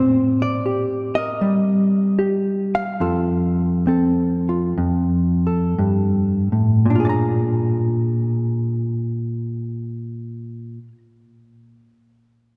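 Bathed in a lush church reverb with a 3.3-second tail, this short solo jazz passage places a clean, dark hollow-body electric guitar up front, its fingered tone compressed. In Bb major and 4/4, the playful, swinging line moves between 54 and 81 BPM with a rubato feel, slowing through the first 6.9 seconds over Cm7 and F. It then settles onto Bb7 for the closing phrase, which runs to 11.0 seconds as the piece is cut off.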